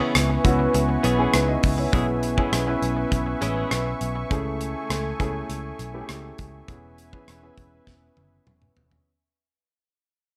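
Dramatic and nostalgic, this short excerpt of 1980s-style pop moves at 101 BPM in a straight 4/4, fading out across its full nine seconds. An up-front grand piano carries the accompaniment through chords of C#m7, E6/B, Amaj7/C# and E6, while a smooth, detuned sawtooth pad with a slow attack holds sustained chords beneath it, thickened by chorus. A clean, compressed electric guitar, recorded direct with tube saturation and analog chorus, plays a picked riff that stops at 4.2 seconds. Entering at 0.2 seconds, a dark, round, foam-muted picked bass sits punchy and up front in the low register. The airy, polished drum kit brings a tight kick, medium-tuned snare, rim clicks, hi-hat and toms, all bathed in gated reverb, and a drum fill closes the passage from 7.9 seconds inside a moderate studio reverb.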